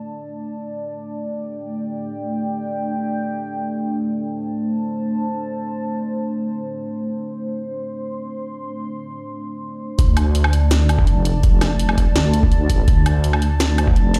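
Played through a big sound system in a bare room with large studio reverb and a digital ambience, this heavy, dark half-time drum and bass piece in D minor at 166 BPM is cut from a longer work. A moody, detuned analog pad with a sub octave, chorus, phaser and sidechain pumping holds slow-attack chords alone until the drop at 10.0 seconds. There a deep, soft wobble bass with sawtooth and sine tones arrives alongside an overdriven kit of cracking snare, bright hats, shaker and woodblock, plus a gritty, pitched-down, thumpy kick that sits up front until 13.9 seconds.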